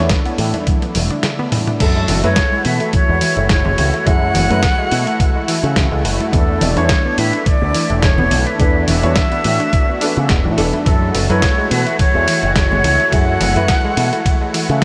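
A swung 4/4 groove at 106 BPM in F# minor drives this cosmic, groovy nu-disco excerpt, built on a thumpy, up-front electronic kick and a gritty, sampler-style soul kit of medium-tuned snare, hi-hat, ride, crash and toms, both carrying studio reverb. A drum fill runs from 0.7 to 1.8 seconds into the drop, where a silver concert flute takes the melody with airy vibrato and tape echo over chords that move between E7sus4 and F#m9. Underneath, a bright picked electric bass with an envelope filter carries the low end, while a lush, warbling sawtooth pad holds sustained chords with chorus and sidechain pumping. A round analog pluck plays arpeggios in the background, also chorused and pumping, with tape echo of its own. A dark, worn baby grand piano sits very quiet in the accompaniment, joined by very quiet, ringing congas on percussion, both stopping at 13.7 seconds, and the whole mix is dreamy and soaked in a huge ambient reverb.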